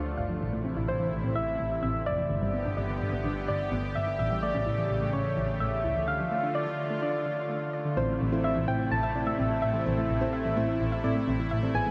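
A bowed double bass sits up front with vibrato and gliding portamento, while a gentle, keys-like FM synth lead carries the melody from 0.9 seconds over a thick, detuned unison pad and a dark, round pluck playing arpeggios in the background. This cool, nocturnal pop piece moves through Am, G, A7 and Dm, with chorus, delay and shimmer reverb on the lead and pluck. At 8.0 seconds a mellow, full-bodied FM electric piano with phaser joins the accompaniment, all within a dreamy mix soaked in huge ambient reverb.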